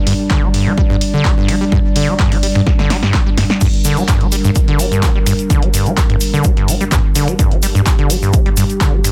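A dense, heavily limited mix in a small room opens this raw, gritty acid house cut in G minor at 127 BPM, where a squelchy, resonant, overdriven saw bass riff with delay and sidechain pumping sits up front beside a dry, punchy electronic kick, while a dark, nasal analog pad holds sustained Gm chords under subtle chorus, a punchy analog drum machine supplies snare, hi-hat, handclaps, finger snaps and crash with a fill at 2.7 seconds, and a grainy, bright egg shaker slips into the background at 3.6 seconds.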